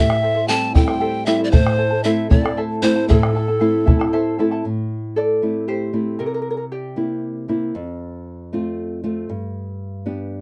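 Earthy and festive, this 77 BPM Andean folk excerpt in 6/8 and A minor opens with an airy, chiff-edged wooden pan flute carrying the melody up front over a round bombo, a shimmering double-strung charango and a small nylon-string guitar set up front, both fingerpicked; after the flute and drum drop out near 4.3 seconds, the charango steps forward for a solo at 4.6 seconds, all in a dry, close 1970s-style studio sound with light reverb.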